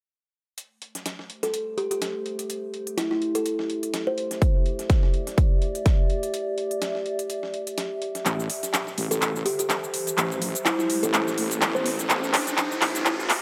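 A punchy, overdriven electronic kick sits up front in this swaggering, aggressive bass house cut, hitting between 4.4 and 6.0 seconds. Around it, an overdriven big-room dance kit drives the 125 BPM groove with crisp hats, handclaps and shaker, swung on the sixteenths, while a gritty, tape-toned sampler-style kit adds filtered hi-hat and a medium-tuned snare far lower in the mix. A warbly, nostalgic, lo-fi pad with detuned square and triangle tones fades in under chorus and sidechain pumping, and a woody, ringing kalimba plays a dark, smooth melody through tape echo in A minor. From 8.3 seconds a heavy, saturated wobble bass in sawtooth and sine enters on A, and a drum fill and an electronic riser build toward the end. A moderate, lush hall reverb gives the whole excerpt a sense of space.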